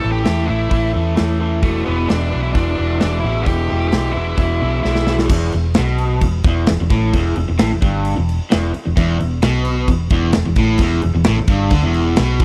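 A dry, close 1970s-style studio sound frames this gritty, driving classic rock excerpt in E minor at 131 BPM, cut from a longer piece. A dark octave-fuzz lead guitar with distortion and tape echo carries the melody until 5.2 seconds. Beneath it sit an up-front overdriven electric guitar riff in spring reverb, a round hollow-body bass and a big acoustic drum kit with a tight kick and medium-tuned snare in a stone room, whose fill at 4.8 seconds leads into an Em chord, before a cranked stack guitar adds a second bright, picked riff at 9.0 seconds.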